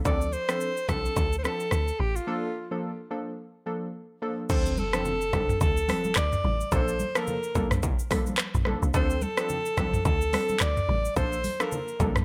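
A breathy alto saxophone carries the melody up front, its whispered, intimate tone and soft attack giving this mellow, sultry afrobeats fragment a pop-style solo voice. Beneath it, glassy digital keys comp with a detuned, wave-folded sine sound, thickened by chorus and touched by a filter sweep, while a woody log drum bass adds punchy, percussive low notes with a noisy FM edge. The industrial drum kit sits close and produced, pairing a distorted kick with smooth hi-hats among handclaps, rim clicks, shaker, toms and crash, all given the character of a small room and a swung sixteenth-note feel. A break arrives at 2.3 seconds, and an electronic impact sounds in the background at 4.5 seconds as the second section begins, with bright, saturated congas slipping in softly behind the groove from 4.8 seconds. The chords alternate between Dm7 and Bbmaj7 throughout, all wrapped in a digital ambience, in what is cut from a longer piece.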